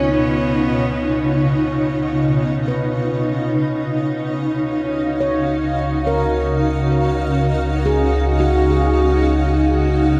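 In free time, this luminous, serene ambient excerpt opens with a brief, biting, nasal cello line that ends at 1.8 s. A cloudy, full-bodied granular pad sits up front holding evolving, blurred chords that move from Db7 to Ebmadd9/Db at 3.5 s. A mellow, ringing handpan plays close-miked arpeggios, while a deep, ominous, wave-folded drone rumbles in the bass and fades in throughout, all within a dark production bathed in long shimmer reverb.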